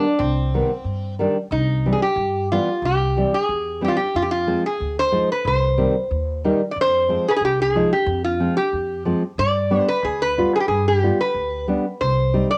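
Klezmer in C harmonic minor, this short excerpt from a longer piece moves at 92 BPM in a straight 2/4, with a soulful, bittersweet mood. A lap resonator guitar carries the melody up front, its metallic, nasal slide tone played with fingerpicks and colored by a cassette-tape character. Beside it, a fingerpicked nylon-string guitar supplies full-bodied, deep classical accompaniment, also up front and tinged by the same tape quality. An upright bass, plucked pizzicato on steel strings, adds a woody, dark low end from 0.2 seconds, sitting quieter in the mix. The harmony shifts among Cm, C, Fm and G, with the second section beginning at 6.8 seconds, and the whole recording has a homemade cassette feel set in a moderate studio reverb.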